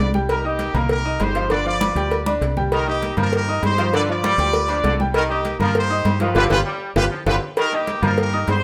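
A moderate studio reverb frames this fiery, danceable salsa excerpt in C minor at 198 BPM, where a clear, punchy horn section with light vibrato carries the melody up front over a bright, brilliant baby grand piano and a deep, round, punchy fingered electric bass. Ringing congas struck with hard hands, metal-shelled agogo bells and timbales, and a tight, high-tuned cowbell sit in the background, while a vintage-toned saxophone section with vibrato enters at 2.7 seconds with a low second line. The harmony alternates between Cm7 and G7, with drum fills at 2.3 and 6.7 seconds and a band accent from 6.4 to 7.6 seconds.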